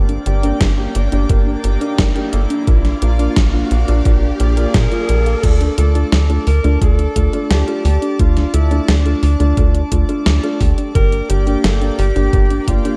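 Dark, warm production with light digital ambience frames this moody, cinematic synthwave excerpt in straight 4/4. A shimmering pulse-width pad breathes with sidechain pumping, a dark grand piano with audible action noise plays delayed stabs, a tight, punchy sequencer bass sits up front beside a knocking electronic kick, and a soft, round pluck spins chorused, delayed arpeggios; a background riser and a filter sweep on the arpeggios run until 5.4 s. Gated 80s drum-machine crash, hi-hat and overdriven gated-reverb snare drive the groove, and at 4.7 s a mellow, close-miked alto saxophone takes the solo melody with vibrato and delay as the chords move from Gm and Bb to Dm.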